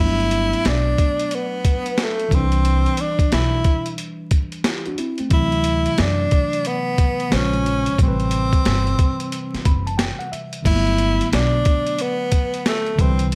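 Nocturnal and mellow, this jazz-hop excerpt at 90 BPM swings lazily as a breathy, close-miked tenor saxophone carries the melody with vibrato, slapback echo and plate reverb over a worn, slightly out-of-tune tine electric piano that adds a fill at 9.3 seconds, a woody pizzicato upright bass, and a gritty, pitched-down boom bap drum kit with a thumpy kick and high-tuned snare entering at 0.2 seconds, all beneath a layer of vinyl crackle as the chords move from Gmaj9 through Cmaj7, D9, Bbm9 and Am9.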